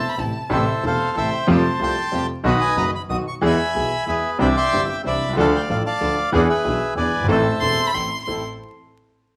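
A loose, rubato 3/4 pulse at 186 BPM drives this sultry, passionate tango in A minor, cut from a longer piece. The dark, reedy bandoneon sits up front with a smooth melody until 7.9 s, while a close, expressive solo violin, bowed with vibrato and portamento, adds a second line at the opening and returns at 7.6 s. A concert grand piano carries the accompaniment with a deep bass, and beneath it a distant bowed double bass sings with vibrato and portamento. A very quiet chamber string section adds stabs with light vibrato and a gut-string, period-style tone. The harmony moves from Am through Fadd9, B, E, Cadd9, Dm and E7 before settling back on Am, with the band playing live in one room under moderate large-studio reverb and a layer of vinyl crackle.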